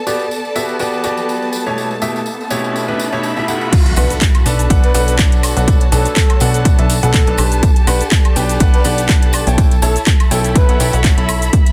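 A bright baby grand piano leads this soulful, energetic piano house excerpt at 123 BPM in B minor, its riff carrying audible action noise and long sustain, pumped by the sidechain and trailed by dub echo. From the start it sits over a close, vibrato-rich violin section holding sustained chords and a dark, woody string section adding texture, both pumping in the background, while a close, dry tambourine ticks along behind them with a 16th-note swing. An electronic riser climbs from 1.2 seconds into an impact as the drop arrives at 3.7 seconds, bringing in a punchy, overdriven electronic kick up front and a layered house kit with metallic hats, handclaps, shaker, woodblock and crash, both re-recorded in a large room. A plucky analog bass with a fast filter pluck and tube saturation joins on a low B, alongside a soft, breathy flute-like synth lead with chorus, vibrato and dub echo that floats in the background. 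The chords move from Gmaj7/B and A7/B into Bm7 before returning, and the mix is dense and heavily limited, with little reverb.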